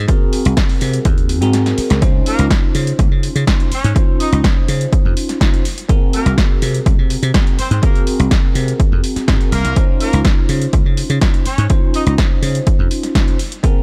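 Opening on a dry, thumbed slap bass with foam-muted punch, joined almost at once by a bell-like tine electric piano through a phaser, an overdriven electronic kick and a punchy analog drum machine of hi-hat and snare, this sunny, funky filtered disco house excerpt in Db major at 124 BPM pumps its bass, keys, hats and horns against the kick, drops the kick for a drum fill at 1.5 seconds, and brings in a brilliant, octave-doubled horn section with vibrato and 12-bit sampler grit at 2.3 seconds over Ab9/C and Dbmaj9 chords, all set in digital ambience on a dry, gritty hardware recording.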